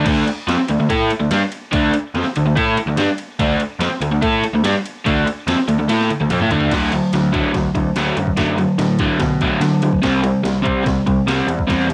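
A straight 4/4 pulse at 145 BPM drives this swaggering, rowdy garage rock clip in D mixolydian, cut from a longer piece and tuned slightly sharp, with a crunchy, double-tracked guitar riff up front over a growling picked bass thick with tube saturation. A gritty, pitched-down sampler-style drum kit with a thumpy kick and high-tuned snare, re-recorded in a large room, enters at 0.1 seconds and delivers a fill from 5.9 seconds that leads into a new section at 6.7 seconds, where the harmony moves from a D power chord to D and then C at 10.0 seconds. The guitar and drums carry cassette tape coloring, and the whole home recording sits in light reverb.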